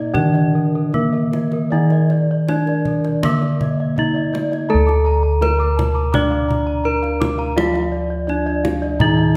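Heard from further back in a wet recital hall, this hypnotic, shimmering Javanese gamelan excerpt in D pelog moves at 74-84 BPM in straight 4/4, with a bright, up-front bronze metallophone played with a horn mallet carrying the melody over an airy lower metallophone accompaniment, while a wooden-mallet metallophone in paired tuning adds shimmering beats alongside close-miked, dry bossed gong arpeggios, mellow padded gongs hold the bass, and a tight, hard-handed kendang plays along as the piece moves into a new section at 4.7 seconds.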